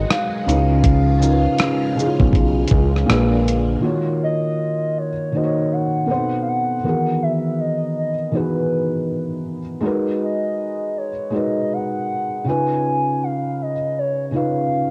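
A lightly reverberant home cassette recording gives this lo-fi hip hop fragment, cut from a longer piece, a nostalgic, reflective haze. At 80 BPM in 4/4 with a swung sixteenth feel in Eb minor, a dusty sampler-style kit of thumpy kick, hi-hat, rim click and shaker sits up front with gritty 12-bit crunch and tape coloring, alongside a fat, thick sawtooth bass with a filter sweep and a swirling, bright string machine treated with ensemble chorus and phaser. The drums, bass and strings drop away around 3.8 seconds as the harmony moves from Db7 and Bb7b9 to Ebm7. Present from the very start, the felt-muted upright piano, soft and dark with audible action noise and cassette tape character, carries the accompaniment throughout, continuing through lush chords such as Emaj9#11 and Abm9. Above it from the opening, a hollow, woody clarinet-like synth lead with a soft attack, chorus and vibrato sings a mellow melody between B4 and Ab5 until the cut at 14.9 seconds.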